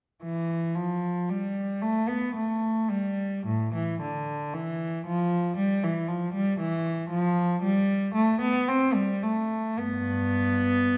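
The recording places a single bowed cello up front in a recital hall whose wet reverb blooms around each phrase for about 1.2 seconds. This is a classical, baroque-style suite movement for unaccompanied cello, cut from a longer piece, with a flowing, radiant mood. One player performs it in period style, drawing a dark, nasal, reedy gut-string tone touched with light vibrato. The music moves in triple metre with uneven beats and a free rubato feel, so the pulse seems to breathe rather than march. The cello plays alone from 0.2 to 11.0 seconds, staying in its lower and middle register from G2 to C4.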